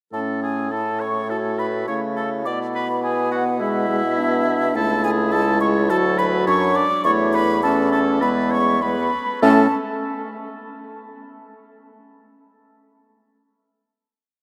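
A straight 4/4 pulse at 103 BPM drives this quick, complete classical-period movement for wind quintet in A major, lively and graceful in mood. The hollow, silvery concert flute carries the tongued melody with vibrato from a close vantage, while the warm oboe doubles the tune an octave below with light vibrato. Beneath them, the smooth-topped clarinet and the mellow French horn weave independent inner lines and sustained chords. The clear, up-front bassoon anchors everything with a sustained bass line and passing notes. The harmony moves from A through E7/B, A/C#, D, A/E and E before landing on a final A chord at 9.4 seconds, and the whole ensemble rings out into a vast, echoing cathedral space.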